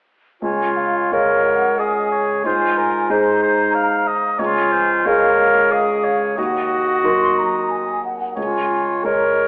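A bright, up-front clarinet with a soft attack carries a tender, moving solo line from 0.4 s in this rubato cinematic film-score excerpt at 91 BPM in 3/4 and Db major, together with a distant, roomy oboe, an airy, hollow flute ensemble with vibrato, and an intimate felt-muted upright piano over chords of Db, Ab and Eb minor, all set in scoring-stage reverb beneath a worn, warbling cassette-tape haze with a telephone-like tone.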